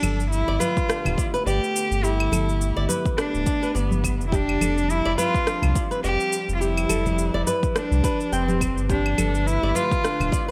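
A swung 105 BPM groove in 4/4 carries this peaceful organic downtempo piece in G mixolydian: overdriven electronic claves, shaker and rim click and bright, close congas tucked in the background, joined at 0.8 s by a deep, overdriven electronic kick. A round, sine-like sub bass pumps with sidechain compression, and a warbling, lo-fi, detuned pad sits in the background with chorus and its own reverb, holding Gadd9 and Fsus2 chords. Up front, a smooth, nasal bowed cello sings the melody with vibrato and tape echo, while a bright fingerpicked flamenco guitar, complete with finger squeak, spins echoed arpeggios.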